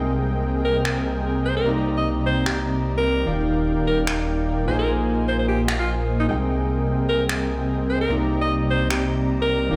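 Future bass with a lush, playful mood and a swung half-time feel, cut from a longer piece and moving through jazzy chords such as Cm9, Ebmaj9 and Bb7sus4. A dark, mellow grand piano with long sustain and a fat, bright sawtooth polysynth riff carrying vintage 12-bit sampler grit play from the start over a thick, detuned, chorused saw bass, while a clear alto saxophone with vibrato and delay takes a forceful jazz-style solo from 0.7 s. Overdriven electronic finger snaps, layered and re-recorded in a small room, sit up front from 0.9 s to 9.0 s, and the mix rings in a large studio reverb as if played on a big sound system in a bare room.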